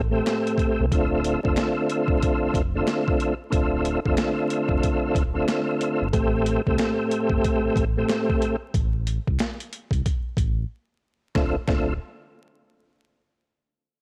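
Dark and reflective, this boom-bap hip-hop excerpt in D minor moves at 92 BPM with a swung 16th-note feel. An up-front tonewheel organ, smooth and clean with chorus vibrato and a fast rotary speaker, moves between Am7 and Dm7 over a deep, sustained sine sub bass with an octave and transformer saturation. Pitched-down, gritty sampler-style drums with a thumpy kick, high-tuned snare and hi-hat sit up front, a very quiet, dry finger snap adds a human touch, and cassette tape, vinyl crackle and a home-recorded ambience frame a break from 8.7 to 11.4 seconds.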